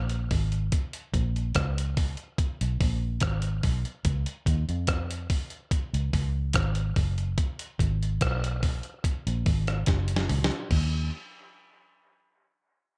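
Dub reggae at 72 BPM in a straight 4/4, this short cut from a longer piece carries a deep, meditative mood. A vintage fingered electric bass, dark, round and foam-muted through an amp, sits up front in a low register from Gb1 to F2. A dusty, sampler-style soul drum kit, compressed and gritty, joins almost at once with a thumpy kick, a fat snare, rim clicks, hi-hat, toms and crash cymbal, its sound re-recorded in a large room. A drum fill runs from 9.9 to 10.7 seconds and leads into a brief closing section, with the drums ending at 10.9 seconds and the bass holding on until 11.1 seconds. A light reverb surrounds the recording.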